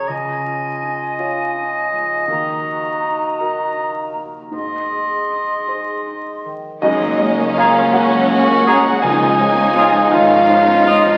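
Moving in a rubato 6/8 at 54 BPM in Db major, this tender, hopeful cinematic film-score excerpt opens with an intimate grand piano, its action noise audible. Above it sit an airy, distant flute, a soft-attack oboe and a background clarinet as second lines, while a ringing harp spreads arpeggios behind them. At 6.8 seconds lush bowed strings enter: violins carry a low melody and a higher, more distant line, a very quiet viola section adds accompaniment, and cellos and clear double basses hold the bass, as a mellow French horn section sustains chords and very quiet calf-headed timpani sound at 9.0 seconds, all set in the wet bloom of a scoring stage and coloured by the crackle of a very old 78 rpm record.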